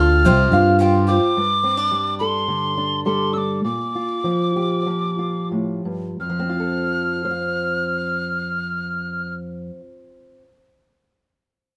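Folk with a warm, uplifting mood, cut from a longer piece, opening with a hollow wooden whistle carrying an airy, softly attacked melody with vibrato over a bright, boxy swing-style picked acoustic guitar, a light thumb-plucked ukulele playing arpeggios and a dark, round, amped electric bass that drops out at 1.2 seconds. At 1.4 seconds the swing guitar and ukulele give way to a fingerpicked old ladder-braced acoustic guitar with woody tone and worn strings, and the music slows through Gsus2 and Bb6 before arriving on F at 6.2 seconds. The band sounds live in one room with wet studio reverb, the close-miked whistle, bass and both guitars sitting up front.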